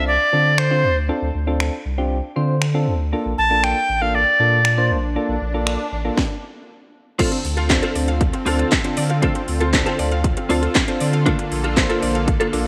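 Bathed in a moderate echo-chamber reverb, this bittersweet, energetic dance-pop piece in D minor at 118 BPM opens with a bright, reedy alto recorder melody trailing tape echo over soft electric-piano-like synth keys with chorus and tremolo, a round sub bass pumping under sidechain, and a punchy house drum kit of kick, cracking snare, metallic hats, finger snaps, handclaps and crash arriving at 0.6 seconds, before an electronic swell and a brief stop give way at 7.2 seconds to a fuller passage where a smooth, detuned supersaw, a woody mallet-like synth pluck arpeggiating in the background and a clean, direct-recorded electric guitar riff with ensemble chorus join over Dm7 and Bbmaj7 chords.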